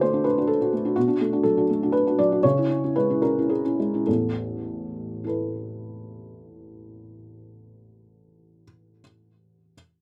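A felt-muted upright piano plays alone from 0.0 to 9.8 seconds, its mellow, hushed tone sitting up front with audible action noise and a short sustain. This wistful, intimate piece of neoclassical minimalist piano moves in a rubato 3/4 at roughly 102-129 BPM, slowing between 0.3 and 4.1 seconds as the harmony passes from D through Bm7 and C#m to Asus2, across a range from A1 to D5. Recorded outdoors with light reverb, this excerpt is cut from a longer piece.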